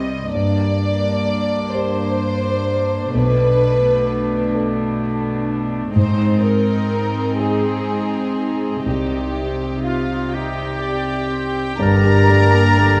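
A dark, up-front violin section carries a soft, sul tasto second line over a mellow grand piano whose intimate, vintage tone comes with audible action noise, opening this sorrowful, moving excerpt of cinematic orchestral film score in a rubato 6/8. Pure, floating violas and cellos, also bowed sul tasto with soft attacks, fill out the accompaniment and bass as the harmony passes from Gm through Bm7, Ab and Cm. At 9.8 seconds a warm upper violin section takes the melody high above, joined almost at once by a clear, lightly vibrato solo oboe. At 11.8 seconds the music settles onto Gmadd9 as more voices arrive together: a very quiet, close-miked clarinet, an airy metal-toned flute in the background, a distant, roomy horn section holding chords, and a woody, very quiet double bass section. A moderate scoring-stage reverb and a dark, warm production give the ensemble an intimate yet spacious feel.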